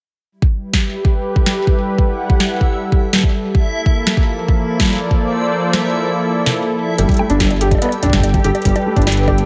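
A smooth, warbling analog pad with chorus and sidechain pumping carries sustained Gmaj9 and Bbmaj7 chords through this wistful, intricate IDM excerpt at 144 BPM, joined by a reversed, dreamy granular texture, a deep up-front electronic kick that drops out from 5.3 to 7.0 seconds, and a booming, tape-warm analog drum machine playing bongos, metallic hi-hats and a tonal snare through delay, before a felt-muted upright piano with 12-bit sampler grit and a rumbling, detuned saw bass on G1 arrive at 7.0 seconds over a Gadd9 chord, all in light reverb.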